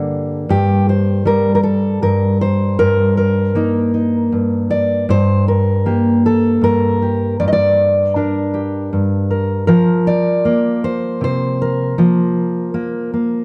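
A fingerpicked steel-string dreadnought guitar carries this brief solo folk fragment, its dark, full-bodied tone sitting up front in the mix. Moving in an unhurried three-beat metre with a straight feel, the playing spans from G2 up to Eb5 and carries a melancholic, reflective mood. Finger squeaks on the strings add a close, human texture. The harmony settles on an Eb/G chord at 0.5 seconds and shifts to an Fsus4 at 9.7 seconds before the passage breaks off at 13.4 seconds, clearly cut from a longer piece. A moderate recital-hall reverb gives the guitar a sense of space, framed by a warm, shadowy production.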